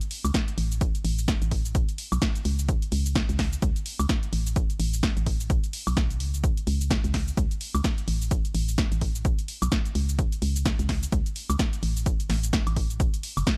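A steady 4/4 groove at 128 BPM carries a 59% swing on the 16ths, giving this short piano house cut a loose, bouncing push from its opening moment. A punchy analog drum machine supplies cabasa, hi-hat, woodblock and a punchy snare, while a separate electronic kick drum sits up front with a tape-warm thump from 0.3 seconds onward. The bass, entering at 0.2 seconds, is a dark, hollow, organ-like FM sound with a fast attack and a decaying, percussive tail, ranging from F#1 to C#2. Tube saturation roughens its tone, and sidechain pumping makes it breathe around the kick. The mood is bittersweet yet energetic, and the dry, gritty hardware sound keeps every hit close and immediate, running through to 13.6 seconds.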